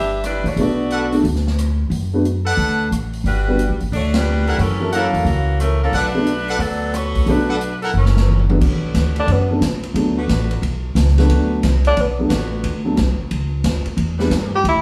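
A bright, up-front saxophone section carries the melody in this sultry, brassy big-band swing excerpt, over a growly, woody upright bass, a polished drum kit with dark cymbals and a punchy kick, and an intimate, boxy upright piano, while a present trumpet section adds stabs and the band hits an accent at 4.1 seconds. After a drum fill at 7.9 seconds, the saxophones move to soft-attack sustained chords with light vibrato, and a warm, roomy tenor saxophone takes a solo in brief subtone phrases with scooped notes from 9.2 seconds.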